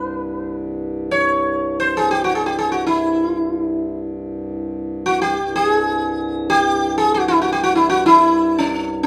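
Serene and radiant, this short excerpt of Hindustani classical music unfolds in free time, set in raga Puriya Dhanashri on C. The sitar carries the melody throughout its 9.1 seconds, moving between C4 and Db5 with a bright, buzzing tone haloed by shimmering sympathetic strings. It sits up front in the mix, plectrum-plucked and round. Beneath it, a pedal harmonium holds a low drone between C2 and G2, its reedy, breathing sound tucked well behind the sitar with a boxy, small-room character. The two players share one studio room, and a wet studio reverb lends the performance a gentle, live air.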